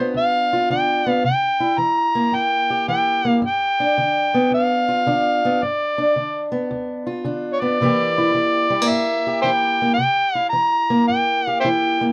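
Acoustic country blues at 110 BPM in a swung 4/4, this soulful, rollicking excerpt pairs a gritty, amplified overdriven harmonica, playing a jazz-style lead up front with tongue slaps and scooped notes, against a boxy fingerpicked archtop guitar whose fresh strings and audible finger squeaks carry the G7 and C7 changes, all captured in a dry, close 1970s-style studio sound tuned to A4 = 445 Hz.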